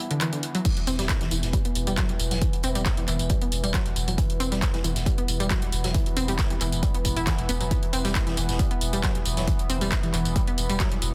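Driving peak-time techno in E minor at 136 BPM, this short cut from a longer piece feels industrial and intense, with a straight 4/4 pulse. A detuned sawtooth analog pluck plays a round, decaying riff with chorus, delay and sidechain pumping, while an evolving analog drone of sawtooth and pulse-width-modulated tones swells in with a slow attack and sustains beneath it, also chorused and pumping. A techno drum kit of crash cymbal, handclaps, tambourine and warm hi-hats arrives at 0.1 s, and after a brief opening break the heavy, layered electronic kick takes hold at 0.7 s, joined at the same moment by a very quiet, distant acoustic big-band kit adding roomy hi-hat and snare. A deep, thick sine sub bass on E1 enters at 0.9 s, saturated and low-pass filtered, with sidechain pumping. The sound is a dense, heavily limited modern master with light reverb, and the kick and techno kit carry a tape-warm, small-room character.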